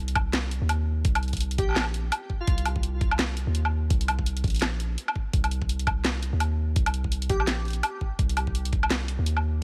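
A deep, sine-toned 808-style bass holds long, sustained notes up front from the very start, its fast attack decaying and roughened by tube saturation. This is a dark, heavy half-time drum and bass cut taken from a longer piece, with a swung feel to its sixteenths. A layered electronic kit adds a cracking snare, bright hats and woodblock, while a separate electronic kick knocks beneath it, both re-recorded in a small room. An airy, dreamy lead appears only briefly, around 1.6 s and again near 7.3 s, a soft detuned unison of sine tones with a noise layer, vibrato and a moving notch, coloured by chorus, cassette tape grain and tape echo. The mix is dry, with little reverb, keeping the bass and drums close and weighty.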